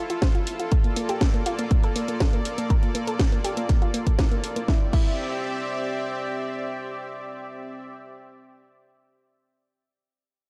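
Hopeful and euphoric, this progressive house excerpt moves at 121 BPM in a straight 4/4, its dark production set in light reverb and built on Fmaj7 and Bbmaj7 before shifting to Cadd9 at 4.7 seconds. A lush, detuned supersaw pad holds slow-attack chords with a long release, while a round analog pluck plays arpeggios through chorus and tape echo, a filter sweep running across it until 4.7 seconds, both parts pumping with sidechain. An up-front, punchy electronic kick enters at 0.2 seconds beneath a house kit with a cracking snare, hi-hat and crash, and the drums stop at 5.1 seconds as the synths carry on.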